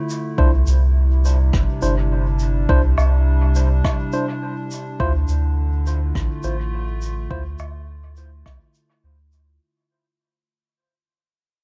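A round, up-front dub sub bass anchors this meditative, deep ambient dub excerpt at 104 BPM in D minor, beneath a warbling, lo-fi tape-like pad with chorus and built-in reverb, clean tine electric piano stabs and distant shaker, rim click and woodblock both carried by dub echo, and an overdriven electronic kick, moving from Cadd9 to Dm in an echo-heavy mix that fades out from 3.5 seconds.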